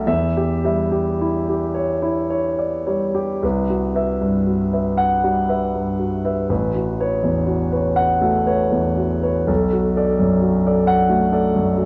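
A warm grand piano opens this brief impressionist solo passage, its open tone and long sustain sitting up front in a recital hall with a moderate reverb. The mood is mysterious and nocturnal, moving in a slow, rubato 6/8 at roughly 34-45 BPM counted in dotted quarters. The harmony begins on Em6, then at 3.4 seconds shifts into a second section colored by Cmaj7#11, drifting on to A69 and finally Bm7 at 9.5 seconds. The piano spans from A1 up to F#5, so deep bass notes ring beneath the hazy upper chords. Cut from a longer piece, the passage lasts just under 12 seconds and feels suspended, like a glimpse of a larger nighttime reverie.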